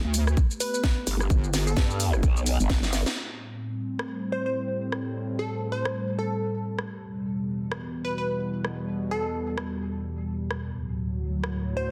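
A heavy, square-wave wobble bass with overdrive and chorus opens this gritty, bouncy bass house clip at 129 BPM in A dorian, soon joined by an aggressive, formant-filtered growl bass, both pumping against a tight electronic kick through a drop that ends with a drum fill and a band accent at 3.0 seconds. A swung garage kit of hi-hat, rim click, shaker and a cracking, soft-clipped snare carries on alongside a glassy, crystalline wavetable pluck with dub echo and an evolving, resonant sawtooth pad that sustains chords moving from Gadd9 through Am7, Em and D. The dense, heavily limited mix sits in light digital ambience, and the clip is cut from a longer piece.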